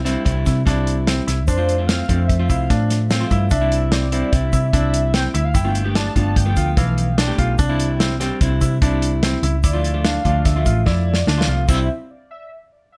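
A shimmering, retro pulse-width lead with chorus and tape echo carries the melody from 1.5 s over a driving, intricate progressive groove in 5/4 at 147 BPM in C major, backed by a round, up-front hollow-body picked bass, a dry soul drum kit with dark cymbals and a tight kick that plays a fill at 10.9 s, clear grand piano arpeggios with long sustain, clean dark jazz guitar accompaniment, and a grainy egg shaker in the background, all in light reverb in this excerpt from a longer piece.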